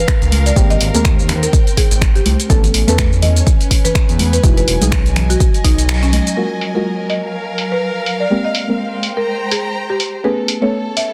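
A dense, heavily limited modern sound in a digital ambience frames this relaxed deep house excerpt, moving at 124 BPM with a swung 16th feel in F# major over lush major-ninth chords. A buzzing, woody marimba carries the melody through tape echo, while nasal chord stabs pump with sidechain, chorus and analog delay over a bowed chamber string section full of vibrato. An up-front, tape-warm electronic kick and a detuned sawtooth bass anchor the groove alongside snaps, filtered hats, shaker and bright background congas, until the kick drops out at 5.9 s on a band accent and the kick, bass and congas fall away before the second section at 6.4 s.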